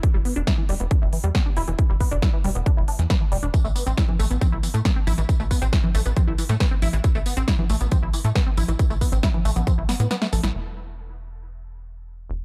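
Uplifting and euphoric, this trance passage, cut from a longer piece, drives forward in a straight four with a dark, dry production in which a punchy, overdriven electronic kick sits up front beside a saturated sawtooth-and-square sequencer bass that pumps against it. A big-room dance kit adds a punchy snare, crisp hats, congas, tambourine and crash cymbal through overdrive and low-pass filtering, while a tight, detuned sawtooth synth runs arpeggios through chorus, phaser, sidechain pumping and dub echo, settling on Asus2 from 3.5 seconds. A drum fill arrives at 9.9 seconds, with the kick dropping out shortly after, then a filter sweep on the drums accompanies the bass through to 12.4 seconds.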